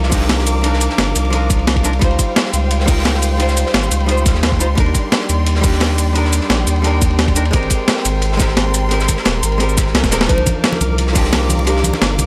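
Melancholic and dreamy, this liquid drum and bass excerpt drifts through lush extended chords, moving from Cm11 through Dbmaj9#11, Ebmaj7 and Abmaj9 before settling back on Cm11. A dark, clean hollow-body jazz guitar plays picked accompaniment dressed in dub echo, while a distant studio string section holds bowed chords with vibrato and portamento above it. Underneath, a thick, saturated sine sub bass sits up front beside a tight, layered electronic kick and a gritty, compressed sampler-style breakbeat kit of snare, hi-hat and cabasa, re-recorded in a small room. A second breakbeat kit, smooth with a rolled-off top and dark cymbals across hi-hat, ride and snare, stays in the background. After a drum fill at 10.0 seconds, a round, warbling FM synth lead with chorus and tape echo enters at 10.3 seconds, and bright, close congas join at 10.4 seconds.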